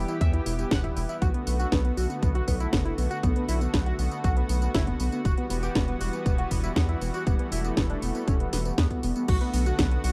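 A thick, detuned unison lead and a lush, airy pad open this italo disco excerpt together with a round, deep analog bass, setting a danceable, melodramatic mood in a straight groove. The lead carries the melody with a bold sawtooth tone, vibrato and a mellow character, bathed in lush chorus and tape echo. Beneath it the pad holds sustained chords with a slow attack and a bright, chorused shimmer, moving from Em to Bm7 and later to Emadd9. The house kit arrives at 0.1 seconds with a cracking snare, metallic hats, tambourine and crash, and a punchy electronic kick joins at 0.2 seconds, standing forward alongside the dark, sustained bass. The drums carry a tape-warm, re-recorded character, and the whole recording sounds dry and close, in the manner of a 1970s studio.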